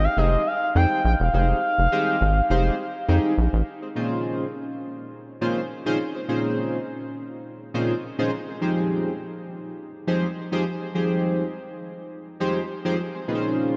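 A straight 4/4 pulse drives this slick, funky early-eighties boogie funk excerpt, where a rubbery, bouncy square bass with a filter pluck and a smooth sawtooth lead with vibrato, portamento and tape echo open together over minor ninth and eleventh chords. A glossy, full-bodied chorused polysynth with a dark filter sweep enters at 0.2 s and carries on alone after the bass stops at 3.6 s. A cathedral reverb leaves the dreamy mix soaked and soft at the top.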